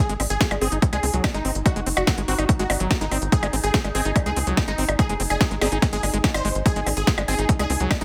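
A straight psychedelic trance groove drives this intense excerpt, with a punchy, up-front electronic kick arriving at 0.4 s over a techno kit of cracking snare, smooth hats and percussion blips, both re-recorded in a small room. A tight, nasal sequencer bass with tube saturation and a squelchy, gritty acid bass riff sitting in the background through distortion, 12-bit sampler grit and dub echo join them, while a detuned supersaw stab carries the melody through phaser and dub echo. A wave-folded, overtone-sweeping drone entering at 0.7 s holds sustained chords under chorus, its own reverb and the sidechain pumping it shares with the stab and acid bass, all set in light reverb.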